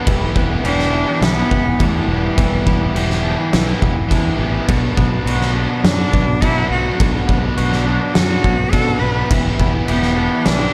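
Brooding and cathartic, this short post-rock excerpt moves at 104 BPM in a straight 4/4, centred on E minor and tuned slightly low to A4 = 435 Hz, with chords shifting from Em7 to Bm and back to Em7 at 9.3 seconds. Up front, an oversized, low-tuned acoustic drum kit fills a big, pumping room with a boomy kick, fat snare and dark crash cymbals, its sound saturated and gritty. Beneath it, a growling fingered electric bass, direct and amped with overdrive, adds a bright, snarling low end. Set back in the mix are three guitars: a twangy clean guitar plays arpeggios through subtle chorus and slapback echo, a crunchy overdriven guitar carries a riff, and a compressed fuzz guitar plays a riff of its own with distortion. From 0.6 seconds a single bowed cello sings the melody with focused vibrato and a slightly boxy tone, touched by slapback echo. Light reverb and a dark, warm production give the whole passage a heavy, enveloping weight.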